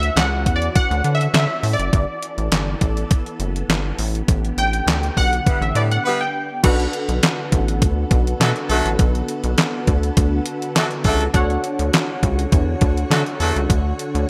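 A detuned 8-bit digital drum machine underpins this early-eighties boogie funk fragment, its thumpy kick, medium-tuned snare, hi-hat, handclaps and crash pushed up front with overdrive and gated reverb, sounding as if re-recorded in a small room. Below it, a rubbery, bouncy square-wave bass with a resonant filter pluck carries the low end, while a punchy, detuned sawtooth polysynth comps with chorus and an evolving filter sweep. A silky string machine sits in the background, its mellow sustained chords softened by phaser and ensemble chorus. At a danceable, late-night 102 BPM in B minor, the opening stretch features an analog polysynth solo over Dmaj9, G69 and A9sus4, with a band accent from 4.3 seconds and a short break at 6.0 seconds. A horn section with light vibrato and octave doubling enters at 5.5 seconds, playing a loose, warm second line as the music settles on Bm7 and Dmaj7 from 6.6 seconds, all framed by bright 1980s-style digital production and light reverb.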